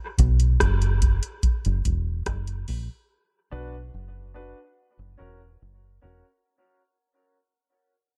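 A straight 4/4 pulse at 72 BPM opens this hypnotic, deep dub reggae excerpt in B harmonic minor, as a soft vintage rhythm box with a deep kick, metallic hi-hats and rim clicks sits up front until 2.9 s beside a dark, round, foam-muted fingered electric bass that is punchy and direct. From 3.5 s, quiet woody upright piano stabs with long sustain and dub echo drift over the bass through chords moving between B, F# and Bm. The whole brief passage, cut from a longer piece, fades out within a studio ambience.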